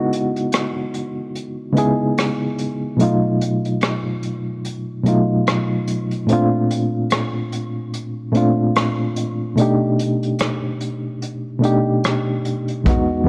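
A soft cassette-tape haze and light reverb give this short excerpt the feel of a small, close room. It is a reflective, melancholic lo-fi hip hop groove at 73 BPM in 4/4, with a gentle swing on the sixteenths and tuning set slightly below standard pitch. A reedy, worn electric piano carries the accompaniment from 0.0 to 13.3 seconds. Heard through its built-in speakers, it sounds a little out of tune, with a fast tremolo shimmering over the chords C#m11, B7#11, A#maj9 and B7alt. A vintage brush kit sits up front from 0.1 seconds, its dark, rolled-off sound built from a punchy kick, hi-hat and rim clicks. The whole passage plays as a break, unhurried jazzy harmony over a dusty beat.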